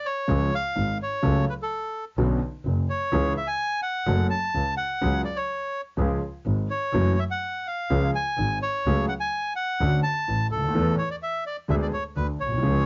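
A reedy, warm bandoneon carries the melody up front in this sultry, dramatic tango fragment in F# minor, cut from a longer piece and lasting about 12.9 seconds. A dark concert grand piano supplies the accompaniment, its mellow, intimate tone marked by audible action noise, deep bass and a smooth, vintage character with a cassette tape coloring. A single clear double bass is bowed beneath them, intense yet smooth on top, with a light vibrato. The 4/4 pulse sits around 126 BPM but is played rubato, so the time breathes freely as the harmony moves through chords such as F#m/C#, Bmadd9, Dmaj7 and Esus4 before settling on G#dim/D. The whole performance has the feel of a home recording on cassette, with nothing above 7.5 kHz and a light reverb around the trio.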